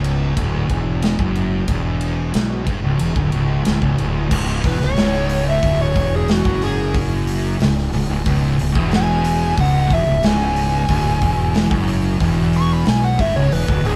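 Stoner and doom metal at 91 BPM in C# minor, this sludgy, hypnotic excerpt sets two thick, picked fuzz guitars riffing low in the background over a growly, overdriven fingered bass and a punchy, up-front acoustic kit with bright cymbals, and a dark, compressed fuzz lead guitar joins with a solo from 4.7 seconds, all played live in one room with moderate reverb.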